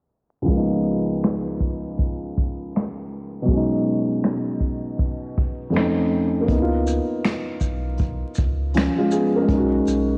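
A soft, boxy and intimate felt-muted upright piano, muffled by a low-pass filter, carries this reflective, hazy lo-fi hip hop excerpt at 80 BPM with swung sixteenths, joined by a dark, smooth vintage brush kit of finger snaps, hi-hat, shaker, punchy kick and medium-tuned snare with a cassette-tape tint, while a deep, round sine sub bass enters at 6.5 s as a filter sweep ends and a second section begins over chords such as C#13 and B69, the whole mix sitting in light small-room reverb with vinyl crackle and a dulled home-cassette sound.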